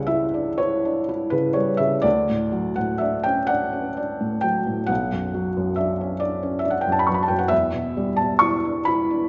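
A classical romantic nocturne for solo piano in D major, dreamy and nostalgic, unfolding slowly in 12/8 at 39-46 BPM with a free, rubato feel across this short 9.3-second excerpt cut from a longer piece. A felt-muted upright piano sits up front, soft, mellow and intimate, with audible action noise, spanning B1 to C#6 as the harmony moves from C#m7b5 to D, then Bm at 4.9 s and Em at 7.5 s. A wet recital hall reverb surrounds the playing, and the recording holds nothing above 7.8 kHz.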